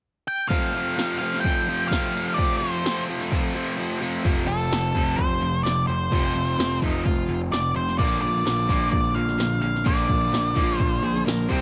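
Confident and driving, this classic rock excerpt in F major at 128 BPM opens with an up-front, dark octave-fuzz lead guitar melody over a crunchy overdriven guitar riff, a bright compressed distorted guitar in the background and a punchy, tape-warm analog drum machine, whose kick and snare drop out from 3.8 to 4.2 seconds before a growling overdriven bass enters at 4.3 seconds and a dark, smooth background lead adds brief second lines as the harmony moves from F to Bb under light reverb.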